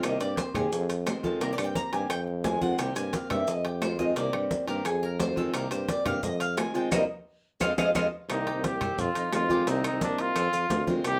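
A straight four-beat Cuban son and guajira groove with a sultry mood sways between Cm7 and Fm7 as ringing low-tuned congas, tight high-tuned bongos, metal-shelled timbales in the background, woody claves and grainy maracas drive a fingerpicked, boxy archtop guitar and a clear, up-front tuba bass with scooped notes, while the metallic, double-stringed Cuban tres solos in arpeggios until a band accent at 6.9 seconds and a drum fill at 7.4 seconds hand the melody to a punchy vintage trumpet with light vibrato at 8.3 seconds, under moderate studio reverb.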